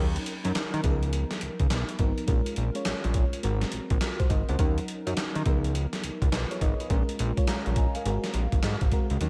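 A fat, detuned analog bass sits up front in this short new jack swing excerpt, its thick sawtooth and square-wave tone carrying a ring-modulated edge and a plucky filter on each note before it sustains. At 104 BPM in 4/4 with a swung sixteenth-note feel, the mood is confident and bouncy. A gritty, compressed sampler-style drum kit enters at 0.2 seconds with a thumpy kick, a medium-tuned snare, hi-hat and handclaps, re-recorded in a large room and placed up front. Behind them, an FM electric piano layered with a soft pad supplies lush, dreamy chords with a vintage, warbling quality, softened further by chorus and a slapback echo. The harmony cycles twice through Ebm7, Db13, Bbm7 and Ab9, all within a light reverb.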